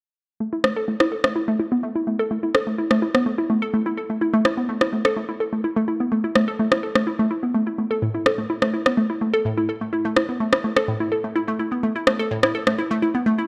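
Bittersweet and expansive, this short progressive house excerpt rides a straight 4/4 metre. A glassy wavetable pluck carries the piece with arpeggios from 0.4 seconds, its crystalline, fast-attack notes decaying quickly and sitting up front, thickened by chorus and a tape echo. A filter sweep runs across the arpeggio sound for its full length, giving the digital tone a sense of gradual motion. An electronic rim click joins at 0.6 seconds and holds the drum part until 12.8 seconds; it is layered and tape-warm, also placed up front in the mix. Both parts sit in a moderate scoring-stage reverb that lends the sparse arrangement an open, airy sense of space.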